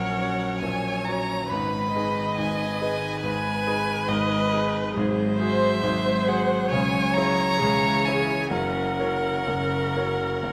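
Rubato and slow at 62-72 BPM in 4/4, this serene romantic movement for piano quintet is cut from a longer piece. Up front, a focused violin carries the melody with vibrato over a brilliant, long-sustaining vintage grand piano and a close, expressive viola with portamento, while a smooth second violin and a rich cello with portamento sit in the background. A wet concert hall reverb surrounds the ensemble, and the harmony moves from F#/A# through G#m and G#7 to C#m before arriving on F# at 8.5 seconds.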